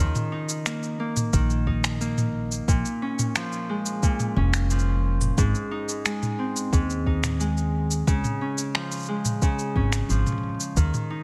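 Delicate and pastoral, this folktronica excerpt moves at 89 BPM in a straight 4/4, with a ringing, fingerpicked Celtic harp up front playing arpeggios through delay, a dark, woody, growly pizzicato upright bass on steel strings run through tube saturation, an up-front organic electronic drum kit of finger snaps, shaker and toms, and a soft electronic kick drum entering at 1.3 seconds, all set in studio reverb over chords moving from Eb5 through Bbm7 and Ab to Db.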